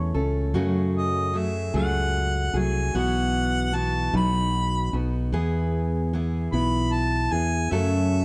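Harmonica, picked steel-string acoustic guitar and fingered electric bass all begin together at 0.0 seconds in this short acoustic folk fragment, cut from a longer piece. The mood is peaceful and hopeful, moving at a slow 50 beats per minute in a straight 6/8 lilt in E major. The harmonica carries the melody with a light vibrato and a roomy, classical-style solo voice. Beneath it the dreadnought guitar supplies picked accompaniment, with audible finger squeak adding a close, human detail. The bass sits up front, dark and round, anchoring a progression that moves from A through F#madd9 and Bsus4 to B, settling on E at 5.3 seconds before turning to F#m. Recorded with close, detailed microphones and little reverb, the warm trio sounds intimate and immediate.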